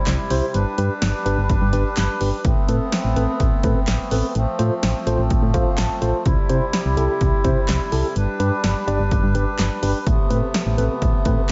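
Synth-pop with a nostalgic, upbeat feel, this short excerpt is cut from a longer piece and moves through C, G, Amadd9 and F/A chords over a straight 4/4 groove. A punchy analog drum machine with tape-warm kick, snare, handclaps and hi-hat sits up front alongside a round, dark FM bass with a fast, decaying attack, while a reedy, nasal hand-pumped harmonium breathes sustained chords from the very start. A mellow, clean tine electric piano heard through its built-in speakers adds accompaniment and a brief fill at 5.3 seconds, all softened by light reverb and a dulled top end.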